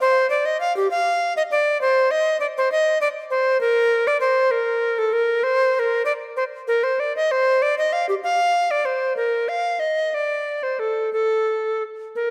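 Baroque-style classical fantasia in Bb major and 12/8, a radiant, dance-like excerpt at a rubato 58-68 BPM for a single up-front bass recorder whose woody, airy tone carries tongued chiff and vibrato between G4 and F5, tuned to A4 = 441 Hz and set in a concert hall with 2.0 seconds of reverb.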